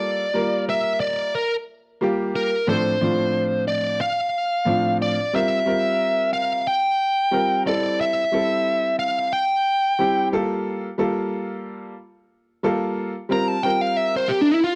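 Slick and soaring, this short cut from a longer jazz piece moves at 90 BPM in 4/4 with a light sixteenth-note swing, set in C mixolydian over chords such as Gm7, F6/A, C7sus4 and Am7. An up-front, smooth overdriven electric guitar takes a picked solo melody from start to finish, bathed in plate reverb. A bright, vintage grand piano, also up front, supplies the accompaniment, all within a dark production and a moderate studio room.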